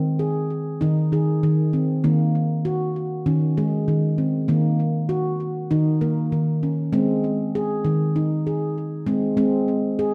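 World meditative music in a gentle, unhurried mood, this short excerpt features a solo handpan of ringing nitrided steel, played with the fingertips and close-miked so it sits full and up front, its delay-touched notes ranging between Eb3 and Bb4 through a chord shift at 6.9 seconds inside a wet, echoing chamber.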